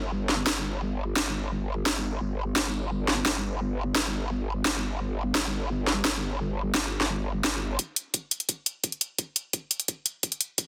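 Aggressive and futuristic, this dark technical drum and bass cut runs at 172 BPM in a straight 4/4 feel, lifted from a longer piece. A growling, detuned bass sits up front from the start, saturated and sustained, its wobbling formant-filtered tone thickened with chorus and overdrive and pumping against the sidechain until 7.8 seconds. An overdriven, layered electronic drum kit enters at 0.3 seconds with a cracking snare and bright hats, its small-room character pushed close to the listener. At 7.8 seconds the bass drops away and a build-up begins, as a knocking electronic kick, overdriven and high-pass filtered, joins the kit through to the end. A moderate plate reverb lends some space, while the dense, heavily limited master keeps the whole mix tight and forceful.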